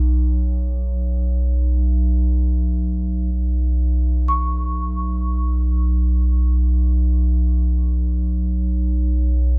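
A warbling, detuned tape-like pad holds a low, nostalgic lo-fi drone up front, softened by chorus and its own reverb, in this haunting, meditative world piece in free time, joined at 4.3 s by a smooth, high marimba texture played with medium hard mallets, the two sitting inside a moderate cathedral reverb with a dark production in a short cut from a longer piece.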